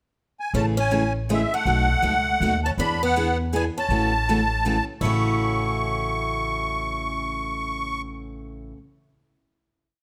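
Heard in a moderate recital-hall reverb, this charming, swinging jazz manouche waltz moves at 160 BPM in 3/4 and A major, with a reedy, shimmering musette accordion up front carrying a motif-based melody from 0.4 seconds, a boxy, bright swing guitar adding a harmony line mostly in sixths with audible finger squeak, a steel-string rhythm guitar picking every beat with short accents on two and three, and a woody, dark pizzicato upright bass playing roots and fifths with walk-ups, before the whole piece settles on a final chord at 5.0 seconds.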